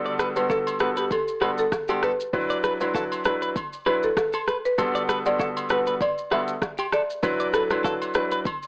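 A buzzing, woody marimba carries the melody through digital delay in this sunny, romantic afrobeats excerpt, set over a clear, polished baby grand piano, a bright, twangy clean electric guitar riff with its own delay, an electronic afro-pop drum kit of deep kick, rim click and shaker, and close, dry agogo bells and woodblock, while the mix sits in light reverb with a worn, warbling cassette-tape and AM radio sound.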